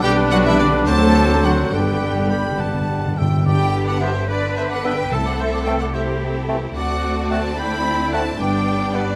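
A scoring stage lends moderate reverb to this spirited, graceful fragment of a quick classical-period movement in G major, played by symphony orchestra in a straight 6/8 at 73 dotted-quarter beats per minute, tuned to A4 = 441 Hz. A close, rich violin section carries the melody with expressive vibrato, while a second violin section, an airy flute group with crisp attacks, a close-miked solo oboe and a very quiet, clear clarinet fill in supporting lines. Beneath them, a soft-attacked bassoon and a distant viola section with portamento give accompaniment, a roomy, very quiet French horn section sustains chords, and a punchy trumpet adds stabs until 3.1 seconds. Smooth, even cello and double bass sections anchor the bass, and calf-headed timpani struck with medium mallets enter dry and close at 1.7 seconds with a fill that leads into the second section at 3.5 seconds. The harmony moves from G/B through D7 to G, then to Am/C and D7 before settling back on G.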